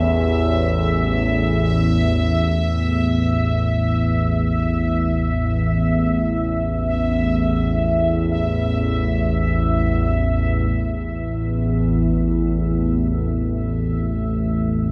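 An up-front analog drone anchors this ominous dark ambient excerpt, its sawtooth and pulse-wave tones, wave-folded and touched with chorus, evolving across a low A1 to E2 range in free time. Above it, a bubbling stepped-filter texture holds on a high E5, its resonant, detuned sawtooth sound shifting through random filter steps and softened by chorus and its own reverb. Both parts sound from the opening to 14.9 seconds, with slow attacks and long releases that keep the sound sustained. The harmony sits in A minor, moving from an A5 at the start to a full A minor chord at 10.7 seconds. At 13.2 seconds a very quiet, deep and moody pad joins, its detuned unison sawtooth layers and sub-octave weight spreading from C4 to E5. A huge, wet reverb with a 7.5-second decay places the whole piece in a vast, echoing space, deepening its dark, ominous atmosphere.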